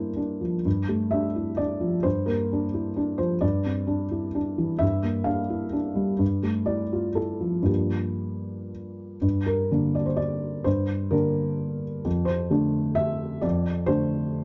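Dark, lightly reverberant production frames this wistful, melancholic neoclassical minimalist excerpt in G dorian, where a solo felt-muted upright piano, intimate and up front, boxy and mellow with audible action noise and short sustain, plays a rubato 3/4 at 129 BPM between F2 and F5, circling Gm7, Dmadd9/G and Cadd9/G before turning at 9.2 s to a second passage that moves from Gm to Dm7/F.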